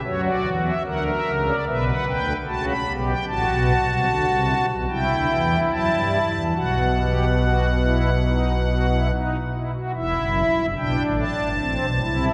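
A long, wet church reverb surrounds this excerpt, with a pipe organ heard up front on its soft, shimmering string and celeste stops. The baroque-style three-part fugue plays as a stately, elegant solo organ piece in a straight 4/4, its romantic voicing reaching from a low E1 up to B5. The harmony moves from F#7 through Bm, Am and B before a new section begins at 9.9 seconds on Em, and the passage breaks off on Am at 12.3 seconds.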